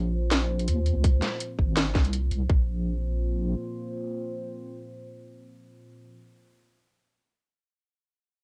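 A dark analog pad and a deep, soft wobble bass open this short cut from a longer half-time drum and bass piece, setting a heavy, cinematic mood. The pad holds moody sustained chords built from sawtooth and triangle tones with a sub octave and a slow attack, colored by chorus, phaser, vintage sampler grit, sidechain pumping and cassette tape, and it sits low in the mix. Up front, the bass wobbles with a detuned square and sine tone, a fast attack, compression, chorus and tube saturation, and it drops out at 3.5 seconds. A layered electronic kit brings a cracking snare and metallic hi-hats with a light swing from 0.3 seconds, joined by a tight electronic kick at 1.0 seconds; both were re-recorded in a small room and carry a cassette tape character. The dry, home-recorded sound keeps the drums close, and after the bass and drums fall away, the pad lingers alone.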